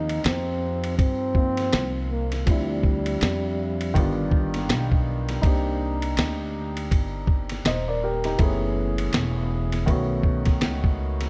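Jazz-hop at 81 BPM with a swung sixteenth-note feel, this cool, smooth excerpt opens with a breathy trombone solo carrying a light vibrato and tape echo, which stops at 4.7 seconds. A dark, mellow baby grand piano with long sustain sits up front over a woody pizzicato upright bass, moving through chords from Eb69 and Dm11 to Cm9, Gbm11 and B7. Driving it all from 0.1 seconds is a gritty, compressed sampler-style drum kit with a thumpy kick, fat snare, hi-hat and ride cymbal, set in a small room ambience.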